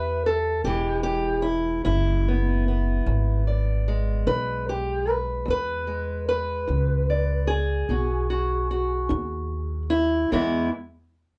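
A fingerpicked steel-string parlour guitar and a pizzicato upright bass start together in this rollicking, gritty acoustic country blues in a straight 12/8, moving from A7 to E7 and then to B before settling on E. The boxy, dark guitar carries the melody up front, while the woody, thumpy gut-string bass sits equally close beneath it, both through a light reverb. The two parts play until 10.7 seconds of this short cut from a longer piece.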